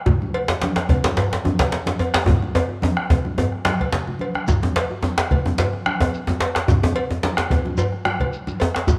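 A round bombo, a medium-tuned djembe, and bright, thin-skinned congas heard at a distance with hard hands open this festive, driving West African drum ensemble excerpt in swung 4/4. A metallic cowbell joins them, followed by a deep, up-front djembe with metal rattles. A drum fill arrives at 2.3 seconds, and a grainy, mellow shekere enters close at 4.5 seconds, all set in light reverb and small-room ambience.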